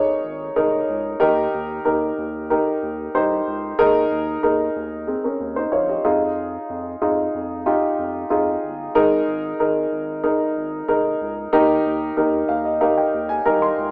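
A woody, polished upright piano sits up front in this anthemic pop clip in Ab major at 93 BPM, carrying the accompaniment through chords of Absus2, Eb, Fm7 and Absus2/Eb before closing with a fill from 12.2 to 13.9 seconds. A round, deep analog bass with a dark, nasal tone enters at 0.2 seconds and sits far lower in the mix beneath the keys. Light studio reverb and a rough home-demo mix give the whole a warm, small-speaker character.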